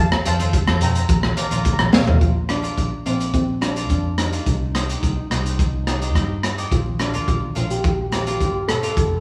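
Sunny and festive, this calypso excerpt at 106 BPM in Bb major sets a mellow, shimmering steel pan melody with digital delay over a round, punchy fingered electric bass, a gritty, saturated breakbeat kit with a high-tuned snare and a drum fill at 1.5 seconds, crisp picked cavaquinho, and distant, very quiet low-tuned congas that drop out at 2.2 seconds and return at 6.9 seconds, all sounding like a band playing live in a small stone room.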